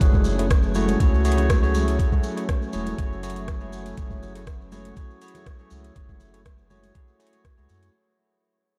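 A straight 4/4 pulse at 121 BPM drives this hypnotic, earthy afro house passage in F# minor: an up-front, knocking electronic kick and an electronic kit's metallic hi-hats and rim clicks sit over soft-handed, ringing congas and distant, grainy maracas, while a deep, round analog bass with sidechain pumping and a filter sweep holds the low end beneath a smooth, sustained sawtooth pad on an F#m7 chord, also pumping, and bright, barky tine electric piano stabs played through a combo amp with lush chorus, low-pass filtering and analog delay, the passage fading out over its 7.9 seconds in light reverb.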